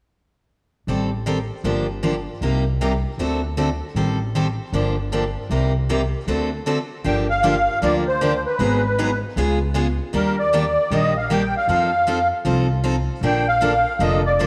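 A reedy musette accordion with a shimmering musette tuning comes in up front at 7.1 seconds, carrying the melody with a slapback echo through the second half of this bittersweet, swinging jazz manouche passage in G minor at 155 BPM. From 0.9 seconds, a bright, full-bodied picked steel-string guitar with fresh strings and audible finger squeak plays the accompaniment through moody minor-key changes, while a woody, thumpy pizzicato upright bass on gut strings holds the low end. A moderate plate reverb gives the acoustic trio a roomy sheen.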